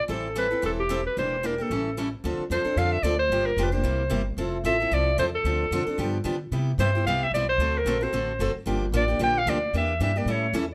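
A moderate studio reverb surrounds this fiery, virtuosic fragment of acoustic string swing in D minor at 224 BPM, where a clear, forceful clarinet with light vibrato and a plate-reverb sheen carries the jazz-style solo melody over a bright, boxy picked steel-string parlour guitar and a woody, thumpy pizzicato upright bass on gut strings, all three placed up front as the harmony moves from Am9 into a longer passage beginning on Dm7 at 2.2 seconds.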